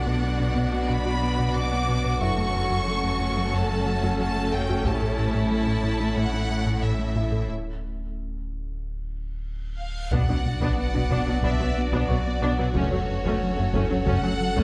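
This is a cinematic hybrid of orchestral and electronic film scoring in B minor at 91 BPM, tense and futuristic in mood, cut from a longer piece. Lush bowed violins with vibrato carry the melody, while a rich chamber violin section adds a smooth second line and a distant viola section with portamento fills in the accompaniment. Underneath, a deep, round sine sub bass and a rubbery, hollow square-wave bass riff anchor the low end, alongside a cello section in the background and a very quiet, woody double bass section from 10.1 seconds. A very quiet, tight, detuned sequenced synth drives arpeggios, a warbling, lo-fi tape-like pad with chorus holds mellow chords, and a faint vintage grand piano adds texture. Close, dry taiko hits with hard sticks punctuate the track, and after a break beginning at 7.5 seconds, a huge, dark reverse cymbal and sub drop leads into an impact at 10.1 seconds, where the taiko returns for the rest of the passage. 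A moderate scoring-stage reverb gives the strings their space.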